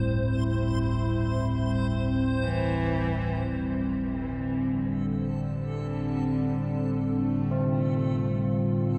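Ominous and vast, this dark ambient drone excerpt moves at a slow 57 BPM in 4/4, drifting from C to D minor at 3.5 seconds. An up-front, resonant pad built from detuned, wave-folded sawtooth and triangle tones holds sustained chords with a filter swell, colored by chorus and phaser. Beneath it, a deep rumbling drone of sawtooth and triangle waves sits low with its own built-in reverb, while old church bells ring out clangorous bronze arpeggios with a beating, minor-third overtone. High above, a reversed, granular texture adds a bright, dreamy shimmer. At 2.4 seconds a single close, bowed cello enters with an expressive melody full of vibrato and portamento, trailed by a diffuse ambient delay, and the whole piece sits in a huge reverberant space with an 8.1-second decay.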